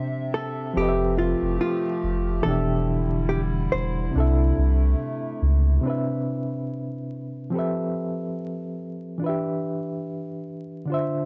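Hip hop with a cosy, nostalgic mood and a lazy swung sixteenth feel, this short cut opens with a dark, fingered hollow-body jazz guitar melody bathed in plate reverb, a reedy, lightly overdriven electric piano with tremolo and a cassette tape tint, and a warbling lo-fi pad that drifts in slowly under chorus. A deep, thick, saturated sub bass enters at 0.8 seconds and sits up front beneath chords moving through Fmaj9#11, Em7 and C6. At 5.8 seconds the guitar, pad and bass have dropped away, leaving the barky electric piano alone for a break over a dark, warm, vinyl-crackled production.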